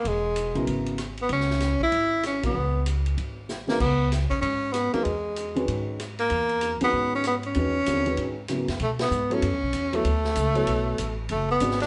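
Modal jazz at a brisk 192 BPM in 4/4 with a swung feel, this short passage is cool and intense, sitting in C# dorian over a C#m11 chord before moving to B dorian and Bm9 at 8.8 seconds. A clear tenor saxophone carries the melody up front with vibrato and a soft attack, its tone lifted by plate reverb. Beneath it, a pizzicato upright bass gives a woody, thumpy pulse, while a dark baby grand piano adds mellow, intimate accompaniment from 0.6 seconds, its short sustain and audible action noise giving it a close, natural feel. A vintage drum kit with dusky cymbals, a medium-tuned snare and a punchy kick sits lower in the mix, marking a band accent at 2.4 seconds and a brief drum fill at 3.5 seconds. The whole group is heard from further back in a reverberant studio room with a rolled-off top, and the music is cut from a longer piece.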